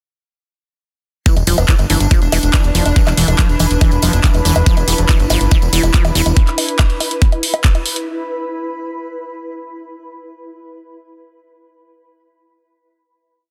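A short, complete psychedelic trance piece at 141 BPM in straight 4/4 opens at 1.3 seconds directly into its hypnotic, driving drop, with a knocking, up-front electronic kick holding four-on-the-floor while a layered programmed kit adds closed and open hats, a clap backbeat and high bongo, and a jingly, close, dry tambourine plays hand-played sixteenths in the background. Beneath them a fat, saturated analog bass rolls in sixteenth notes low between E1 and G1, and a squelchy, resonant liquid acid bass with phaser and delay loops a six-step line between E3 and F3 that drifts against the bar. A pulsing, tempo-synced gated texture with chorus and sidechain pumping sustains a bright high note on D4, and a formant-sweep wobble bass slips in short answering phrases in the background from 1.6 to 3.5 seconds. From 2.3 seconds a cloudy, blurred granular pad, also pumping against the kick, spreads slowly shifting chords between E4 and B5 and carries on to the close at 8.1 seconds. 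The mix sits in light reverb with a dense, heavily limited modern master.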